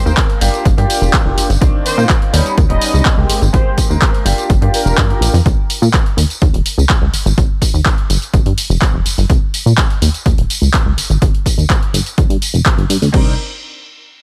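A dry, close recording with little reverb opens this short cut from a longer filtered disco house track in C minor, moving at 125 BPM in a straight 4/4 with a sensual, nostalgic mood. A bright grand piano with audible action noise and long sustain plays accompaniment through phaser, low-pass filtering and sidechain pumping, while a mellow, detuned analog synth brass carries the melody in the background, thickened by chorus and tape echo. Both fall away at about 5.4 seconds, and the piano returns briefly at 13.1 seconds on a Cm9 chord. Underneath, a funky, wave-folded analog bass with a fast filter pluck sits up front and runs through a filter sweep for most of the passage. A punchy electronic kick with tape-warm character anchors the groove alongside an analog drum machine of crash cymbal, handclaps, hi-hat and tambourine, re-recorded in a small room, with its hats, cymbals and percussion pumping to the sidechain. 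The harmony moves from lush chords such as Gm7, Cm9 and Abmaj9 into sparser sus2 and power-chord shapes over the bass and drums.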